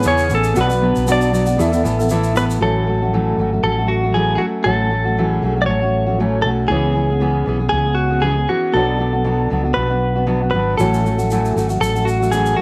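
Acoustic pop with an easy-going, heartfelt mood, moving at 117 BPM in 4/4 with a light sixteenth-note swing in A major, cut from a longer piece. A clean, direct-recorded electric guitar carries the melody up front, its picked, compressed tone touched by slapback echo. Beside it, a full-bodied dreadnought steel-string acoustic guitar is fingerpicked with audible finger squeak, while a fretless electric bass sits forward with a dark, round, punchy sound. An upright piano rests in the background, woody and boxy with long sustain and audible action noise, and a grainy egg shaker sounds distant in a large room, playing only until 2.6 seconds and returning at 10.8 seconds. The harmony moves through C#m7, Bm and Esus4 before arriving at A6 at 2.6 seconds, then passes through C#m7 and Bm back to A6, with light reverb around the ensemble.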